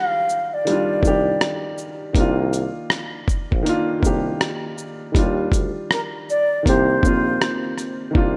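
A swung sixteenth-note groove in 4/4 sets a reflective, hazy lo-fi hip hop mood in this short cut from a longer piece. A gritty, sampler-style soul drum kit comes in at 0.3 seconds with a thumpy kick, hi-hat, rim click and shaker, compressed and sitting up front. The hi-hats drop out at 8.2 seconds. A woody, vintage upright piano with short sustain lays down the chords from the start, moving through Ebmaj9, Cm11, back to Ebmaj9 and then Cm7. Over it, a mellow silver concert flute carries the melody with an airy, slightly unsteady straight tone, a crisp chiff on each note and a tape echo trailing behind. From 1.0 seconds a roomy, jazz-style tuba supplies the bass with soft attacks, scooped notes and light vibrato, all inside a small room and a rough home-demo mix.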